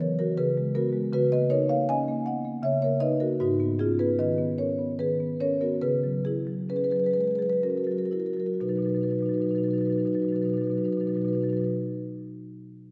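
In a 3/4 with a free, rubato feel, this short excerpt from a longer contemporary classical piece for solo marimba moves at roughly 60-80 BPM and begins to slow from 2.3 seconds until 8.6 seconds. The marimba, struck with soft mallets, sits up front and carries everything alone, ranging from G#2 to G#5 with a woody, round, mellow tone from its rosewood bars. Its harmony is rich and extended, opening on G#m11 over C# and Bmaj9 over C#, passing through G#m11 and C#m7 before settling on a plain B major chord at 8.6 seconds, where a second section begins. A wet scoring-stage reverb with a 1.9-second decay surrounds the instrument, giving each note a lingering halo. The mood is playful yet flowing, with the gentle slowing lending the phrase a relaxed, unhurried grace.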